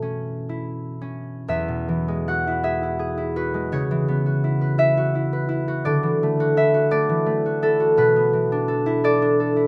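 Moving in a rubato 6/8 at 56 BPM to the dotted quarter, this short passage cut from a longer classical work for solo concert harp sits in E major with a gentle, wistful mood. The fingerpicked harp sounds ringing and up front, spanning E2 to F#5 with a light reverb around it. A brief opening on B9sus4 gives way at 1.5 s to Eadd9, then drifts through C#m7 and Dadd9 before settling on Bm7 at 8.0 s.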